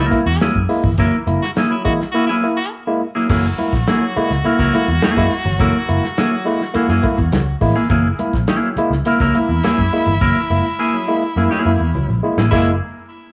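Funky and strutting, this straight-feel funk excerpt moves at 104 BPM in F# mixolydian, resting on an F#9 chord. The foam-muted, picked electric bass sits loudest with a dark, round tone. A dry, tight soul drum kit with a rolled-off top plays throughout, closing with a fill from 10.2 to 12.5 seconds. A clean, twangy electric guitar with spring reverb sits up front in accompaniment, while a barky tine electric piano, lightly overdriven through a combo amp, adds stabs. A raspy, gritty baritone saxophone carries a quieter second line with vibrato and tape echo. Very quiet, thin-skinned congas run alongside, and a band-limited metallic cowbell joins in the background from 3.3 to 7.5 seconds, all captured as a home cassette recording in a small room.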